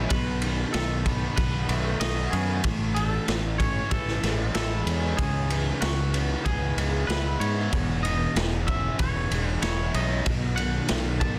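A twangy, clean lead guitar rings out with slapback echo over a crunchy, double-tracked overdriven riff guitar bathed in lush chorus, while a growling fingered bass, overdriven and up front, holds down the low end. A raw garage drum kit joins at 0.1 seconds with punchy kick, medium-tuned snare and ride cymbal, its small, pumping room sound saturated and gritty with a rolled-off top. This short excerpt of a longer piece sits between rock, shoegaze and dream pop, with a hazy, wistful mood and a straight four-beat feel. The harmony drifts through B7, Amaj7, C#m7 and E6 before landing on B at 10.3 seconds. The dense, heavily limited master places bass and drums forward, while the scooped lead guitar sits quietest in the mix amid the studio ambience.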